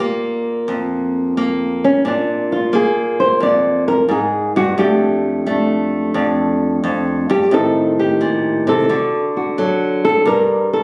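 A flamenco guitar, up front and thumb-plucked, carries this short solo jazz passage cut from a longer piece, its acoustic nylon-string tone moving through a swung, playful yet sophisticated run of changes from Bb5 and F69 into Am7b5, D and Gm. The guitar spans a range from low F2 to D5, and the sound captures a phone recording made in the room, where a large studio-like space and club reverb give the strings a roomy halo while compression keeps the picture tight.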